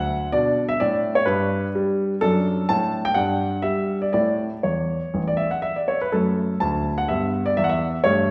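This short clip from a classical-period piano sonatina moves at 126 BPM in 4/4, played with a rubato feel that lets the pulse breathe and lean. A baby grand piano carries the whole passage alone from 0.0 to 8.3 seconds, ranging from A1 up to A5 with a warm, natural, up-front tone and short sustain that keeps its notes crisp. Set in D major, the harmony passes through Bm, G, D/F#, Em9/G and A before returning to D/F# at 6.1 seconds and settling on Em/G at 7.1 seconds. The mood is playful and cheerful, with a lightness suited to the sonatina style. The piano sits in a wet recital hall with a 1.5-second reverb tail, heard from further back in the room, so a halo of space surrounds its warm, up-front tone.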